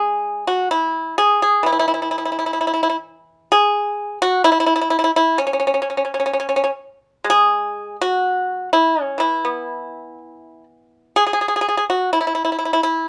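Serene and elegant, this short cut from a longer piece of traditional Chinese solo plucked-string music features a lone pipa in an E gong mode, moving freely in rubato around a slow 64 BPM in 4/4. Played with fingerpicks across a range from E3 to G#4, the acoustic pipa sits up front with a dry, percussive attack and a warm body. A light reverb surrounds the instrument, and the tuning sits slightly below standard at A4 = 435 Hz.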